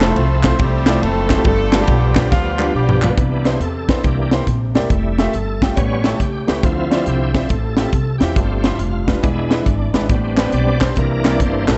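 An echo-heavy, dark-topped mix with light small-room reverb opens this jubilant, hopeful uptempo gospel cut at 138 BPM in swung 4/4, where a tight, punchy horn section carries the melody with octave doubling and tape echo until 3.1 seconds, over very quiet, hollow group handclaps. Crisp fusion drums with a high-tuned snare, punchy kick and 12-bit sampler grit sit up front beside a woody, thumpy pizzicato upright bass, while an intimate upright piano with audible action noise plays accompaniment in the background. After a drum fill, a shouting, lightly overdriven tonewheel organ with slow rotary speaker and chorus vibrato takes a solo from 3.2 seconds over rich extended chords such as Cmaj9, Dm9 and Am11, with the handclaps returning at 10.4 seconds.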